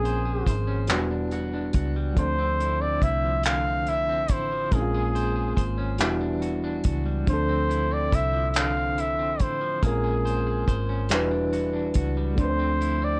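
Slow six-eight R&B with a late-night, sultry mood, carried by a smooth, up-front flugelhorn melody over a cycle of minor ninth chords. An overdriven, reedy electric piano played through a combo amp supplies gritty accompaniment, while a twangy electric guitar at the edge of break-up weaves a second line with tremolo and analog delay. A foam-muted, round, punchy electric bass and a cloth-damped, thuddy drum kit with a tight kick, hi-hat and handclaps anchor the groove up front, and light reverb and a cassette-tape sheen give this short cut from a longer piece a dusky, vintage glow.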